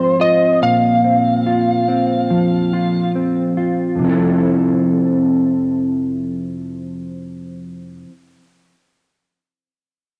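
Dream pop with a dreamy, ethereal mood, this short cut from a longer piece moves at an unhurried pace in four. A mellow electric guitar plays clean, dark arpeggios from the start, fingered and up front, coloured by analog chorus, analog delay and cassette tape. Alongside it, a slightly broken-up electric slide guitar carries the melody, compressed and up front, with the same tape and delay treatment, before it drops out at 3.1 seconds. The harmony drifts from Ab6 through Bbsus2 to a Fmaj7 at 4.0 seconds, where the arpeggiated guitar continues alone until 8.2 seconds. A moderate spring reverb and digital ambience surround the parts, and the home cassette recording leaves the top end soft and dulled.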